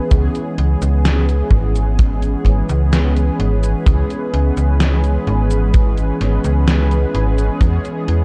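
Vaporwave with a nostalgic, dreamy mood, cut from a longer piece and heard through small room ambience on cassette tape. Mellow, round synth brass with subtle chorus and analog delay holds a dark, detuned sustain over C#m7, moving to E6 at 7.6 seconds, while a snappy FM bass with a metallic attack sits up front beneath it. A gated 80s digital drum machine supplies cabasa, hi-hat and a gated-reverb snare, and a punchy, airy acoustic kick drum plays until 7.8 seconds.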